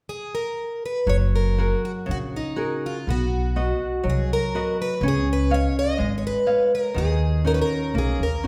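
Fado-style ballad in a tender, nostalgic mood, unfolding with a rubato feel in this short cut from a longer piece. A bright, shimmering plugged-in twelve-string acoustic guitar carries the octave-doubled, picked melody alone before a fingerpicked flamenco guitar and a woody, dark pizzicato upright bass join at 1.1 seconds, with all three parts up front, over chords moving from F#add9 through B and C#add9 to D#m7. A wet recital hall reverb wraps the trio in the resonance of a church or concert hall.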